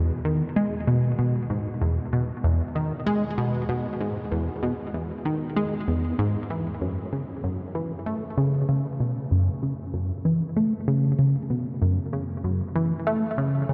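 Cosmic and mysterious, this ambient piece, cut from a longer work, moves at 96 BPM in a straight 4/4. A single tight, sequenced synth plays alone from start to finish at 13.7 s, ranging from E2 to A3 and sitting up front in the mix. Its detuned sawtooth and square-wave tones carry a driving filter pluck with a fast attack and sustained body, coloured by chorus, phaser and delay. At 6.8 s a new section begins and the music settles into F# minor. The whole recording is dreamy and soaked in a huge ambient reverb with a 7.9-second tail, and it carries a cassette-tape character.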